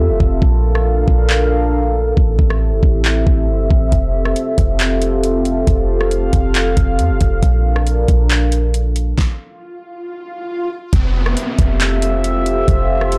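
Blissful and floating, this atmospheric cloud-rap excerpt moves in a half-time feel, its dark analog pad holding moody, slow-attack sawtooth chords with chorus, phaser and sidechain pumping over a deep, boomy 808-style bass with clean sine tone and tube saturation. A smooth R&B kit enters at 0.2 seconds with a knocking kick, fat snare, metallic hats, handclaps and rim clicks, all tape-warm and up front, while the chords drift from Bbmaj7 through Am7 to Fmaj9. The music drops into a stop at 9.2 seconds as an electronic swell rises, and the groove returns on Fmaj9 at 10.9 seconds, the whole mix sounding dry, blown-out and overdriven.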